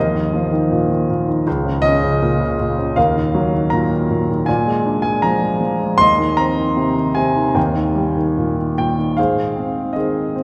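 Classical solo piano in A-flat major, lyrical and tender, drifting with rubato around 72-80 BPM in 4/4 across a short cut from a longer piece. A warm grand piano plays alone from Db2 to C6, intimate and up front with audible action noise, its harmony moving through Ebsus2, Bbm/Db and Bb7 before settling on Eb and finally resolving to Ab at 9.2 seconds. The piano sits in a wet cathedral reverb with a 4.8-second decay, giving the close, natural tone a long, hall-like halo.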